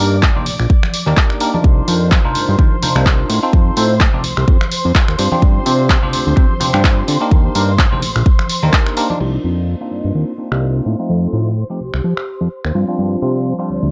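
Groovy and nostalgic, this filtered disco house excerpt rides a swung 4/4 pulse in which the bell-like tine electric piano, bright and clean under its phaser, pumps with the sidechain and carries the accompaniment. A fat analog bass sits up front, thick and saturated with a detuned, wave-folded edge, while a rich studio violin section holds smooth, even sustained chords with vibrato in the background, both low-pass filtered and pumping. The punchy electronic kick drives the groove until 8.8 s alongside a punchy analog drum machine of hi-hat, handclaps, finger snaps and crash cymbal, re-recorded in a small room, with distant tambourine and congas adding an acoustic shimmer behind them. At 9.2 s the chords move into a new pass and a filter sweep takes hold, including on the drums. A mellow, hollow concert flute then enters at 9.9 s with an airy, soft-attacked melody and gentle vibrato tucked into the background, all in a dry, close sound.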